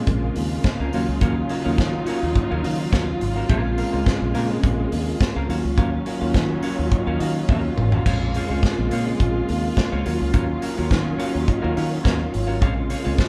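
Recorded as a band playing live in one room with a moderate large studio reverb, this sultry, driving disco excerpt at 105 BPM in 4/4 moves between Bbm7 and Ebm9, with an up-front, dark, tight-kicked acoustic drum kit adding a fill at 7.5 seconds, a round, foam-muted fingered electric bass, a clean, fingered semi-hollow electric guitar, lush bowed strings with woody vibrato holding sustained chords, and a worn, slightly out-of-tune tine electric piano sitting in the background and adding fills from 6.3 and 10.9 seconds.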